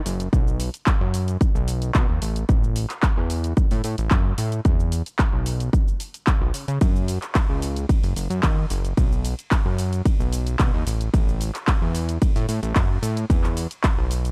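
Nu-disco with a sleek, groovy mood, this short cut from a longer piece moves at 111 BPM in a straight 4/4 across a single section. A fat analog bass runs from the start to 14.3 seconds, its detuned sawtooth tone thick and evolving, with a fast-attack filter pluck that sustains and sits up front between F#1 and D#3. An electronic kick drum enters at 0.3 seconds, punchy and overdriven, placed prominently in the mix after being re-recorded in a large room. A layered house drum kit of handclaps, hi-hat, ride cymbal and shaker, also overdriven and re-recorded in a large room, sits lower behind the kick and bass. The overall sound is dry and gritty, with the grain of hardware and transformer saturation and very little reverb.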